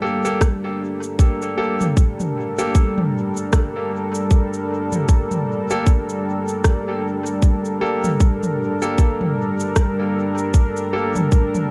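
A deep, moody pad holds sustained Gmadd9 chords with chorus and warbling detuned unison from the first moment, alongside brilliant, woody upright piano stabs soaked in dub echo, while a tight, up-front electronic kick and a produced kit of cabasa, rim click and toms set a swung 77 BPM pulse in this spacious, meditative ambient dub excerpt in G minor.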